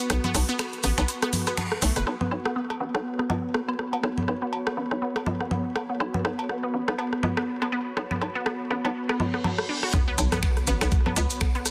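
A squelchy, detuned sawtooth blip pluck carries the riff through chorus, phaser, tape echo and cassette grit, its filter sweeping from 2.1 to 9.9 seconds, while a hollow, bouncy FM bass and an ethereal, slow-blooming pad pump beneath it in this hypnotic, cool, swung minimal techno cut from a longer piece. Up-front rim clicks, congas, woodblock and cowbell run throughout, and the overdriven garage kit with metallic hats and snaps, plus grainy maracas in the background, frames the opening and closing stretches. A reverse cymbal rises from 9.2 seconds into an impact at 9.9 seconds, where a knocking, overdriven electronic kick finally lands, all set in a lush hall and a dense, heavily limited master.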